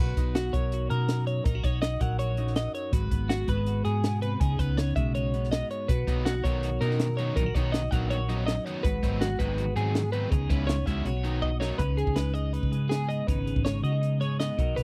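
This math rock and midwest emo excerpt feels intricate and wistful, opening on two clean, picked twelve-string electric guitars and a round, dark hollow-body bass: one guitar lays down accompaniment through spring reverb while the other spins bright, twangy arpeggios with slapback echo. A compact cocktail kit with a high-tuned snare and punchy kick joins a moment later, and a double-tracked, crunchy overdriven guitar riff runs from 6.1 to 11.8 seconds. The jazzy ninth chords give way after a drum fill to a suspended chord at 11.8 seconds, all captured in a dry, close 1970s-style studio sound.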